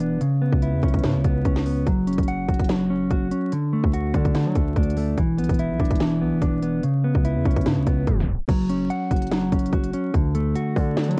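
Trap-flavoured hip hop excerpt with a brooding, hard-hitting half-time feel, where a dark, clean, fingered electric guitar sits up front over a cassette-tape haze, crisp hats, a sharp snare and a hard-clipped kick from a gritty sampled kit, and a distorted, heavy 808-style bass rumbling in the background, all under vinyl crackle and a tape stop at 8.1 seconds before the closing section.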